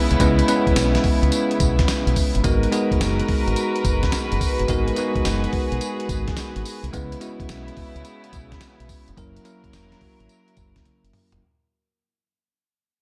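A swung 16th-note groove at 107 BPM drives this bouncy, slick new jack swing R&B clip in G# minor, where a gritty, compressed sampler-style drum kit with a thumpy kick, gated reverb, tambourine and toms sits up front over a dark, round fingered electric bass. A bell-like tine electric piano provides accompaniment through C#m7, G#m9 and F#7, while a reedy, gut-string studio string section holds sustained chords with light vibrato. The whole clip fades out under light digital ambience, and a drum fill arrives at 10.9 seconds.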